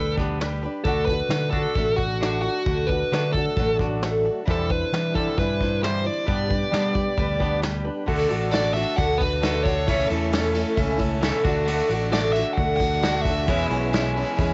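A straight 4/4 pulse at 133 BPM drives this nostalgic, hopeful stretch of folk rock and heartland rock, cut from a longer piece and settling into D major from 8.1 seconds. Soft brushes on a small-room kit with a tight kick and crash, and a round, dark fingered bass carry the groove. A picked, ladder-braced acoustic guitar with old strings adds a woody, boxy accompaniment underneath a bright, twangy electric riff. Up front, a dark, overdriven lead guitar with a cassette-tape tint sings the melody until 13.7 seconds, over a very quiet tonewheel organ whose slow rotary speaker colors its sustained chords. At 8.1 seconds a reedy electric piano with fast tremolo and a jingly vintage tambourine join, the piano slipping in a brief fill near the close, all heard dry and dusky through a home cassette recording that rolls off everything above 7.8 kHz.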